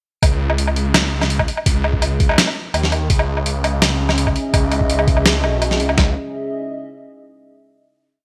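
This short, complete piece of half-time drum and bass at 167 BPM in C# minor feels dark and spacious, opening at 0.2 seconds straight into a drop on a C# minor chord. A sampler-style boom bap kit, pitched down, gritty and tape-warm, carries the sparse half-time beat: a thumpy kick and medium-tuned snare sit alongside closed hi-hat and a low woodblock, all touched with studio reverb and with the hats and woodblock placed up front. Underneath, a phased, detuned saw bass holds long dark notes between B1 and D#2, its swirling, thick tone saturated and sitting prominently in the mix. At 3.6 seconds a deep, moody analog pad enters quietly with slowly shifting chords between C#4 and E5, its wave-folded, chorused sound pumping against a sidechain. The drums and bass stop around 6 seconds, leaving the pad to ring out a final chord until 7.4 seconds, all framed by light reverb and a bright, 1980s-style digital sheen.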